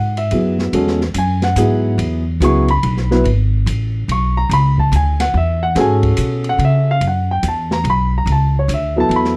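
Modal jazz in a swung 3/4 at 143 BPM, this short excerpt from a longer piece carries a cool, intense mood rooted in C# Phrygian. A grand piano handles the accompaniment up front, spanning F#3 to C#6 with a warm tone. The upright bass, plucked with steel strings and a woody, warm sound, sits up front as well and anchors the low end from G#1 to C#3. An open jazz drum kit enters at 0.2 seconds, sitting back in the mix with a dark, smooth small-room character: dark cymbals on ride and hi-hat, a medium-tuned snare and a boomy kick. The harmony rests on C#m7 before moving to F#m7 at 7.0 seconds, all captured in a dry, close 1970s-style studio sound with little reverb.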